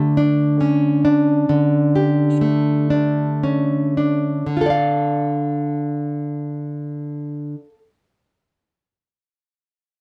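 Intimate and passionate, this excerpt of a romantic piece for solo classical guitar unfolds in D minor at a rubato 36-48 BPM in 4/4, with a bright, fingerpicked nylon-string guitar placed up front in a dry, close 1970s-style studio room with light reverb; it slows over an A7/D chord before settling onto D minor at 4.5 seconds, ranges from D3 to F5 with audible finger squeak, and plays until 7.8 seconds.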